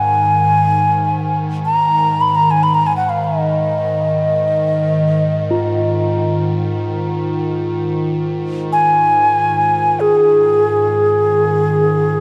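A bamboo xiao and an evolving wavetable pad open together in this spacious, meditative world piece, which drifts in free time. The end-blown xiao carries the melody up front, its crisp attack and vibrato lending an airy quality to lines between G#4 and B5, with a diffuse ambient delay trailing behind it. Beneath, the pad holds a low drone: a vintage sine tone that morphs and warbles, with slow attack, long release, chorus and its own built-in reverb, sounding bright and also sitting up front. At 5.5 seconds a bronze singing bowl, struck with a suede striker, adds a softer metallic ring with slow beating that carries through to the close at 12.2 seconds. A cathedral reverb with a 5.0-second decay surrounds the piece in a dark, warm space, and the music plays as a fragment cut from a longer meditation.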